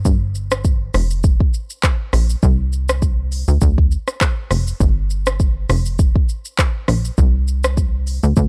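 Sultry and mellow, this afrobeats excerpt moves at 101 BPM in 4/4 with a light 16th-note swing, cut from a longer piece. A plucky analog bass with a punchy, funky sawtooth and square-wave tone, fast attack and decaying filter pluck sits up front in the low register from F1 to D2. An electronic afro-pop drum kit with a deep kick, smooth hi-hat, handclaps, rim click and shaker shares the foreground, and both play together from 0.1 to 8.5 seconds in a dry, gritty hardware sound.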